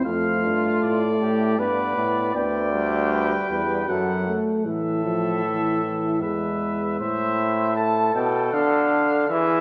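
This classical canzona for brass ensemble, in A minor at 78 BPM in 3/4, feels contemplative yet driving as imitative lines unfold over harmonies moving from Dm/F through F#m and E to Am and Dm. A distant, warm trumpet carries the melody with light vibrato, a mellow second trumpet sings the second line beneath it, an up-front euphonium with a vintage tone and vibrato supplies accompaniment until 7.0 s, and a bright, up-front bass trombone anchors the bass. The brass sits in a reverberant concert hall with a touch of small-room ambience, and the passage is cut from a longer piece.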